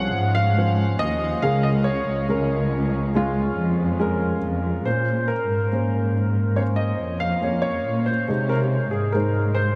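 Tender and heartfelt, this short fragment of a straight-feel pop ballad in 4/4 pairs a clear, polished concert grand carrying the melody with audible action noise and long sustain, a woody upright piano under subtle chorus supplying accompaniment, and a dark, lush bowed cello section with expressive vibrato holding the bass, all up front in a dreamy mix soaked in a huge ambient reverb as the harmony moves from Dbmaj7 to Bbmadd9 at 4.9 seconds and settles on Ab.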